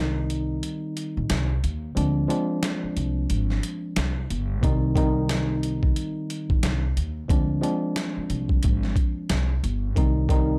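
A swung boom-bap groove comes from a compressed, gritty sampler-style drum kit that arrives at 0.3 s, with a thumpy kick, medium-tuned snare and hi-hat re-recorded in a large room and set up front. A woody, dark pizzicato upright bass on gut strings and a worn, slightly out-of-tune tine electric piano, filtered and softened by cassette tape, carry a tough, moody minor progression. A very quiet, close finger snap ticks along from 1.3 s, all within a dry hardware-recorded sound touched by digital ambience.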